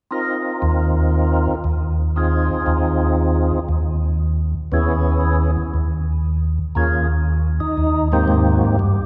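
A percussive tonewheel organ opens the music at 0.1 seconds, carrying the melody with a fat, lightly overdriven tone, audible key click, second-harmonic percussion and chorus vibrato, all turning through a slow rotary speaker. At 0.6 seconds a second tonewheel organ joins on the bass line, mellow, round and dark, with its own light overdrive and slow rotary speaker, sitting just a touch louder in the mix. This short cut from a longer jazz piece swings at 118 BPM in 4/4, with a greasy, soulful mood. The harmony rests on a Bbsus24/Eb chord before moving to Abmaj9 at 8.3 seconds. Both organs sit up front, wrapped in the lush, lingering reverb of a church or concert hall.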